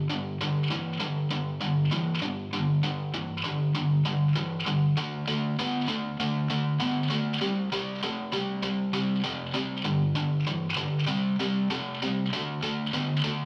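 Raunchy and gritty, this short rock excerpt features a single tight, distorted electric guitar in a solo role for its full 13.5 seconds. The picked tone is bright, double-tracked and placed up front, sitting in a low register. It works through a chain of power chords in a straight 4/4 feel, holding G5 at the start, moving to D5 at 5.0 seconds and C5 at 7.4 seconds, then circling back through G5, C5 and D5 in quicker succession toward the end. A wet stone room reverb surrounds the part, lending a live, roomy ambience that suggests a band playing together in one space. The clip is cut from a longer piece, so it feels like a riff caught mid-song rather than a complete statement.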